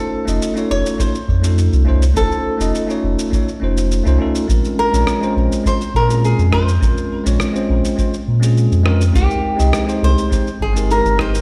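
A fingerpicked flamenco guitar carries the delay-touched melody over a bell-like tine electric piano with digital delay, a round, sine-toned sub bass from 0.3 seconds, a gritty, sampler-style cabasa and rim click, and a deep, dry electronic kick from 1.0 seconds in this sunny, warm sunset chillout excerpt, which moves through F7b13, Bbm9 and Abmaj9 and plays through a big sound system in a bare stone room.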